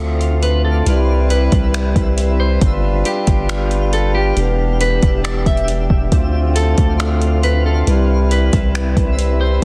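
A deep, sine-toned 808-style bass anchors this melancholic, spacious cloud-rap excerpt in a half-time feel, its long decaying notes sitting up front beside a smooth R&B kit of finger snaps, metallic hi-hat and a soft kick, roughened by vintage 12-bit sampler grit and a soft-clipped snare, the kit re-recorded in a large room. A reedy, close-miked pedal harmonium breathes through sidechain-pumped chords moving from Dm7 through Cmaj7, G7 and Em7, while a dark, clean picked electric guitar carries the melody through spring reverb and tape echo. From 0.2 seconds a twinkling granular texture with an octave-up FM shimmer drifts in the background, all within a dense, heavily limited modern master.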